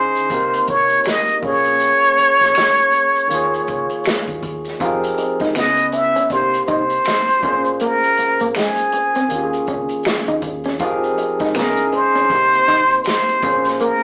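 R&B and neo-soul with a sultry, late-night mood and a swung sixteenth-note feel: an intimate trumpet in plunger mute leads up front with breathy, whispered wah-wah, vibrato and scooped notes, over a bright, barky tine electric piano, a dark, round fingered bass in the background, a distant, roomy acoustic drum kit played with bundle sticks, and maracas and finger snaps, while from 4.8 s a slightly broken-up, picked electric guitar through a small old amp adds a second line, the whole captured as a rough rehearsal-room recording with warm saturation and a compact-speaker sound.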